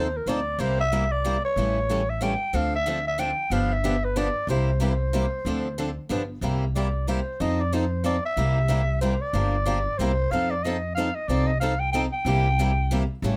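This excerpt swings in 3/4 at 185 BPM, a playful, charming slice of acoustic string swing in the jazz manouche tradition, centred on C mixolydian. A growling clarinet carries the melody up front from 0.0 to 13.1 seconds, its mellow tone roughened by a raspy, gritty edge and shaded with vibrato in a soloing jazz style. Beneath it, a picked swing-style acoustic guitar with a boxy snap and a picked steel-string acoustic guitar set further back in the mix both supply bright accompaniment through to 13.4 seconds. An upright bass, plucked and woody with a dark steel-string tone, sits prominently at the bottom. The harmony moves through dominant and minor seventh chords such as F7, C7, A7, Dm7 and G7 across two passes of the same section, the second beginning at 6.4 seconds, all captured with close, detailed microphones and a light touch of reverb.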